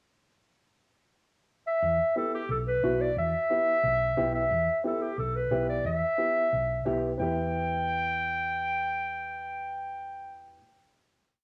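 A warm, up-front clarinet opens this short, driving Latin piece at 1.7 s with a solo pickup in a classical style, then carries the melody in catchy hook phrases. A round, amped hollow-body electric bass plays a cumbia figure, and a dark, woody upright piano adds rhythmic triad chords with its action noise audible. The danceable tune settles on a final chord at 7.2 s, heard through a wet spring reverb and small-room ambience, with cassette tape grit on the clarinet and piano of this home recording.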